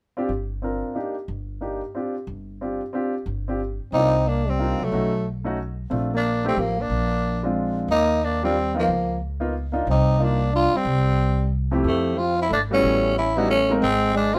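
A swinging 3/4 lilt at 182 BPM drives this moody small-group jazz excerpt in C minor, where a woody upright piano with long sustain and a growly pizzicato upright bass open the cut before a raspy, breathy tenor saxophone takes the lead with scooped, growling notes at 3.9 seconds, joined by a punchy, close-miked trombone on a forceful second line over chords such as Cm11, Bbmaj9 and Db69, all set in light reverb.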